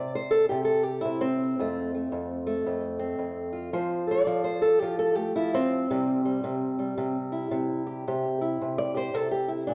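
A roomy, resonant recital-hall sound surrounds this short, laid-back yet rollicking acoustic country blues cut from a longer piece, where a dark, woody, boxy fingerpicked old ladder-braced acoustic guitar with old strings sits up front, playing solo in C major at 111 BPM with a swung 4/4 feel, moving from C to F at 1.6 seconds and back to C at 5.9 seconds across its range from F2 to D5.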